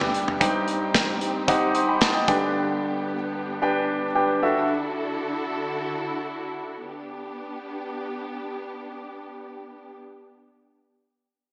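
Piano-driven pop with an anthemic, hopeful mood, this brief excerpt opens with a clear, intimate concert grand whose audible action noise and deep bass ring up front until 4.7 seconds, while a punchy, airy drum kit of hi-hat, kick, snare and toms drops out at 2.4 seconds, and a lush bowed string section with expressive vibrato and portamento holds sustained chords through 10.0 seconds, all set in a wet hall reverb that lends a big arena sound.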